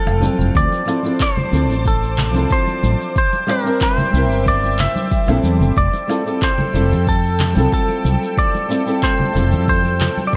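A twangy, clean electric guitar melody through digital delay opens this relaxed, sunny sunset chillout excerpt at 92 BPM in F major, over dark fingerpicked flamenco guitar, a lush, detuned sawtooth pad with chorus and phaser holding Fmaj9, Dm7 and C9 chords, and a round, up-front fretless bass, while layered electronic woodblock, shaker and handclaps, bright compressed congas set in the background, and a deep electronic kick from 0.5 seconds fill out a dark, gently reverberant production.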